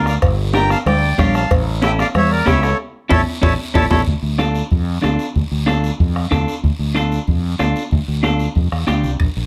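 Danceable and fiery, this cumbia excerpt puts a reedy, up-front accordion melody over a bright, up-front fretless bass, scooped clean electric guitar, soft-beater bombo, raspy guiro, thin-skinned high-tuned congas, and ringing cowbell and timbales that drop out at 4.0 s after a band accent and drum fill, returning only briefly near the end as the groove rolls on until 9.5 s.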